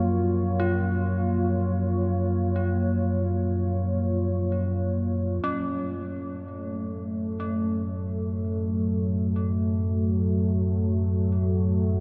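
Unfolding in free time, this desolate, unsettling dark ambient drone, cut from a longer piece, rests on a deep, ominous, rumbling synth drone with a nasal, ring-modulated edge, beneath a moody, warbling pad of sustained, detuned sawtooth chords. From 0.6 seconds a faint, eerie FM bell traces inharmonic arpeggios through chorus and delay. At 5.4 seconds the harmony shifts from A#m to F#m and a filter sweep moves across the drone, all bathed in a cavernous cathedral reverb within a dark production.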